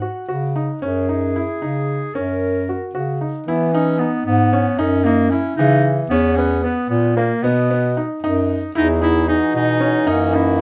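A breathy, close-miked bass clarinet carries the bass line up front in a jazz style with vibrato, beneath a soft-attacked clarinet melody in classical style and clear, intimate grand piano arpeggios with audible action noise. This shimmering, hopeful piece of contemporary chamber music moves in a straight 5/8 at 227 eighth-note beats per minute, shifting to a new passage on Emaj7 at 3.5 s, all in a moderate studio reverb. A reedy pedal harmonium enters at 8.8 s with dry, full sustained chords.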